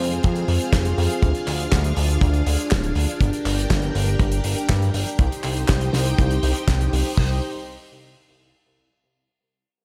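A straight italo disco groove with a bittersweet, melodramatic air opens this short cut from a longer piece: a dry, tight kick and china cymbal sit up front, while a fat snare, hi-hat and handclaps carry gated reverb in a small room, a glossy chorused synth bass mixing pulse, sawtooth and sine tones with a plucky filter drives from below, and a lush string machine with ensemble chorus and vintage 12-bit grit holds slow-attack chords moving from Fm through Ddim and Gm to Cm.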